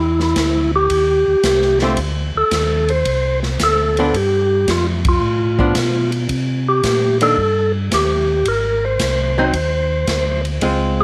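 Bluesy and greasy, this soul jazz organ trio snippet swings in 4/4, with an up-front, flute-like tonewheel organ carrying the melody through a fast rotary speaker, its key click and third-harmonic percussion clearly audible, while a second, darker tonewheel organ supplies a round, lightly overdriven bass line with chorus vibrato and slow rotary. An airy, polished big-band drum kit with a punchy kick keeps hi-hat, ride and snare moving, and a clean, hollow-body archtop guitar joins at 1.8 seconds with compressed, picked accompaniment. The band hits a shared accent at 4.9 seconds, set in a moderate plate reverb with studio ambience.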